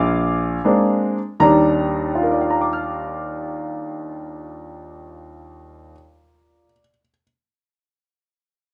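Warm and relaxed, this short fragment of solo jazz in free time and Eb major features a clear, present baby grand piano placed up front and ranging from Bb1 to F6, which eases off in tempo over the opening Bb9 before settling onto an Ebmaj7 at 1.4 seconds and ringing through to 7.2 seconds in a moderate club reverb.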